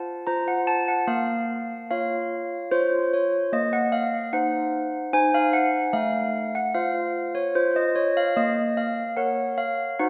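Wintry and solemn, this short classical tune for solo handbells moves at 74 BPM in a straight 3/4, set in Bb minor and tuned slightly low to A4 = 439 Hz. The handbells sound clear, mellow and airy with soft clappers, ringing up front across a range from A3 to Bb5, while a wet scoring-stage reverb lends a bloom to each strike. Cut from a longer piece, the passage opens on F before settling into Bb minor at 1.1 seconds and returning there at 8.4 seconds.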